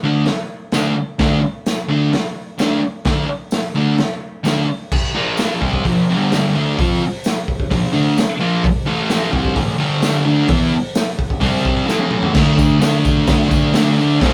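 A thick, double-tracked fuzz guitar opens the riff at 0.0 seconds in this menacing, swaggering garage rock excerpt in D minor at 129 BPM, joined almost at once by a gritty, punchy, saturated drum kit with a medium-tuned snare and a pumping small-room sound, plus a jingly tambourine tucked in the background, all captured as a rough rehearsal-room recording with moderate reverb, and a drum fill at 11.9 seconds leads into a return to the D5 chord at 12.4 seconds.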